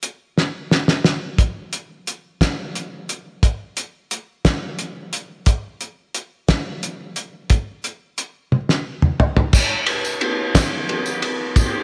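Dark and trippy, this short rock excerpt rolls along in a slow 6/8 at 59 BPM on an up-front, cloth-damped acoustic drum kit with a fat snare, tight kick, dusky cymbals and a rolled-off top, playing fills at 0.4 and 8.5 seconds before a jingly, close tambourine joins quietly in the background at 9.5 seconds, all set in a small room with light reverb.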